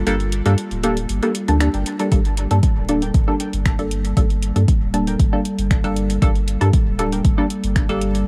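Nocturnal and meditative, this brief dub techno excerpt moves at 117 BPM in a straight 4/4, resting on a single G minor add-nine chord cut from a longer piece. A warbling, tape-like pad of square and triangle tones holds dark sustained chords with a slow attack and long release, softened by chorus and its own reverb, while a muted sawtooth chord stab sits up front, its filtered plucks decaying through chorus, phaser, cassette tape colour and dub echo. Underneath, a round sine sub bass holds the low end, and, like the pad and stab, it pumps against the sidechain. A deep house kit of finger snaps and hi-hat ticks along quietly from 0.1 s, and the up-front electronic kick, deep and tape-warm, lands at 2.1 s to close the opening break. Between 1.7 and 7.2 s, mellow lo-fi synth keys drift in the background with a nostalgic riff, their filter sweep, sub octave, chorus and dub echo adding haze, all over a bed of vinyl crackle.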